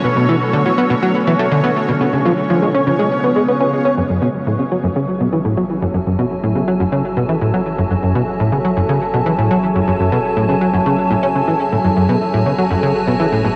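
An evolving, detuned wavetable pad holds mellow sustained chords with ensemble chorus and reverb over a punchy, funky plucked analog bass riff with tape echo and a bubbling, resonant stepped-filter texture in the background, as a very quiet, round sub bass enters at 4.0 s beneath this hypnotic, mysterious snippet of sequencer-driven ambient space music, all bathed in a huge reverb and the warbling pitch drift of worn cassette tape.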